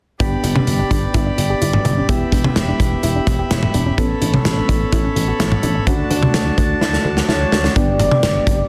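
An up-front acoustic studio drum kit leads this nostalgic, bright synth-pop excerpt in a straight 4/4, with a tight kick, a medium-tuned snare, hi-hat and toms in a pumping room sound, plus a drum fill from 6.8 seconds. Beneath it, a punchy FM bass with a fast attack anchors the progression of G, Em, Aadd9 and D before it returns to G. Soft, full-bodied electric-piano-like synth keys with chorus carry the accompaniment, while a pipe organ on foundation stops holds thick, romantic sustained chords. A very quiet, warbling vintage pluck with chorus adds soft arpeggios underneath. At 7.3 seconds a mellow horn-like synth lead enters with vibrato, chorus and digital delay, and the light small-room reverb and dense, heavily limited master give the whole piece a polished, modern finish.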